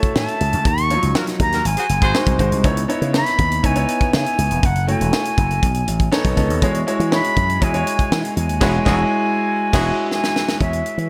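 A straight 4/4 groove at 121 BPM drives this breezy, upbeat stretch of polished 1980s jazz-funk pop in E major, cut from a longer piece. The tight funk drum kit sits up front with a high-tuned snare, tight kick, hi-hat and crash, while the slap bass enters at 0.2 seconds, growly and punchy through its envelope filter. A clear baby grand piano carries the accompaniment with audible action noise, long sustain and a lush chorus, moving through rich chords such as D#m9, C#m9 and B9 before settling on E69. Above it, a concert flute sings the melody with a pure, straight, tongued tone. A mellow horn section with light vibrato and a smooth top adds a second line in the background at 1.2 and 8.6 seconds, joining the band accents, and a drum fill at 10.1 seconds closes the passage. The bright digital production wraps it all in light reverb and a small-room ambience.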